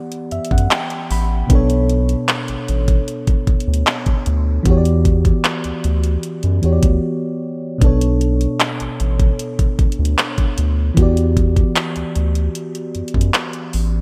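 Sensual and longing, this contemporary R&B passage moves at an unhurried 76 BPM in a straight 4/4, cut from a longer piece. A mellow FM electric piano carries the harmony from the first moment, opening with a fill over the first 1.5 seconds. It has a soft, full-bodied tone with a noise layer and a chorus effect, and it drifts between Em9 and Bm7. A smooth electronic drum kit sits up front with a knocking kick, metallic hi-hats and handclaps, all wrapped in gated reverb and given a small-room character. There is a brief break from 7.0 to 7.8 seconds. Beneath it all, a round analog bass with a deep, nasal, sine-like sustain anchors the low end, while the overall mix has a bright 1980s-style digital polish and a light reverb ambience.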